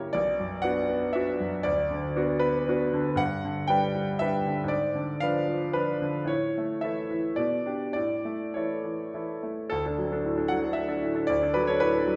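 A bright, worn-toned concert grand piano opens this hopeful, lyrical romantic character piece, playing alone in a rubato 3/4 at roughly 100-122 BPM, with a deep bass and a present, up-front sound set in a wet recital hall. The harmony begins in B minor and moves toward D major from 3.2 seconds, passing through Gmaj7 and G#dim7 chords before settling on D at 9.7 seconds, where a new section begins. This short passage is cut from a longer piece and ends at 12.2 seconds.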